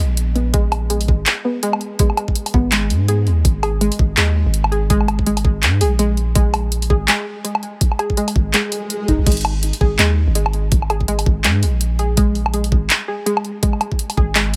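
Heavy and tense, this half-time drum and bass excerpt at 165 BPM in G# minor pairs a warbling, lo-fi, detuned pluck playing dark arpeggios through analog chorus and delay with a deep, mellow 808-style bass sitting up front, while an overdriven drum kit of bright hats, handclaps, crash and woodblock joins at 0.2 seconds and a knocking overdriven kick at 0.5 seconds, all set in digital ambience, with a brief electronic swell appearing at 8.7 seconds.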